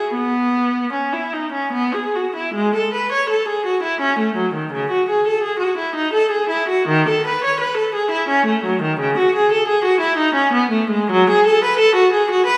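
Flowing and radiant, this baroque-style classical suite movement for unaccompanied viola moves in a rubato 3/4 at 71-90 BPM, with a new section beginning at 2.5 seconds. A single bowed viola, rich, smooth and even, with vibrato, plays up front across a range from C#3 to C#5. A recital hall's wet reverb, with a 1.5-second decay, surrounds the instrument in this fragment of a longer piece.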